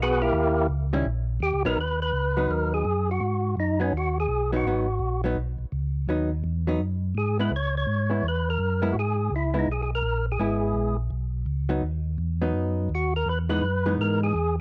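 A percussive, lightly overdriven tonewheel organ opens this smoky, bluesy jazz excerpt in G# minor, carrying the melody through a slow rotary speaker with a tape-worn grit, while a mellow, round organ bass with chorus vibrato sits underneath at a swung 167 BPM. A dark, clean hollow-body electric guitar enters at 0.9 seconds with compressed, picked accompaniment, and from 1.8 seconds the harmony settles on G#m7 before moving through D#m toward Emaj7. The moderate booth ambience and homemade cassette recording give the trio an intimate, up-front sound.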